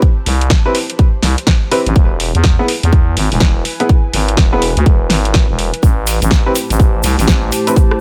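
A gritty, aggressive bass house excerpt at 124 BPM in A minor, carried by a sheen of digital ambience and a sidechain pump, with swung sixteenths over a punchy, up-front electronic kick and a house kit of punchy snare, rim click and bright hi-hats. A thick, growling FM bass with tube saturation drives the low end from 0.3 s, while boxy grand piano stabs with digital delay and a warbling, lo-fi tape-like pad, chorused and reverberant, play over Am7 and E. Near the close, a grainy egg shaker arrives at 5.8 s and a deep, moody analog pad with lush chorus joins at 6.5 s.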